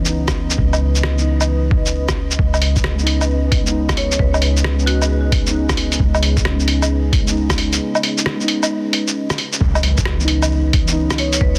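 Wistful and nocturnal, this swung future garage piece rests on a deep, moody ambient pad of sustained chords and muted, felt-like synth keys, both carrying chorus and sidechain pumping, with delay on the keys, above a soft, round 808-style bass. A muffled, tape-warm sampler-style drum kit of hi-hat, rim click, shaker and woodblock sits up front, with soft clipping on the snare, beside a thumpy electronic kick. A woody marimba with medium hard mallets plays a brief background melody at 4.0 seconds, and after a break from 7.8 seconds a very quiet electronic impact arrives at 9.6 seconds.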